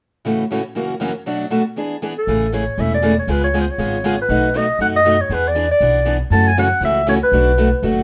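A bright, freshly strung steel-string acoustic guitar opens this swinging, playful jazz manouche excerpt alone with picked accompaniment up front, before a mellow, vintage-toned clarinet enters at 2.2 seconds with a punchy solo melody full of scooped notes, light vibrato and subtone, joined at 2.3 seconds by a woody, thumpy pizzicato upright bass on gut strings, the trio sitting in a moderate studio reverb.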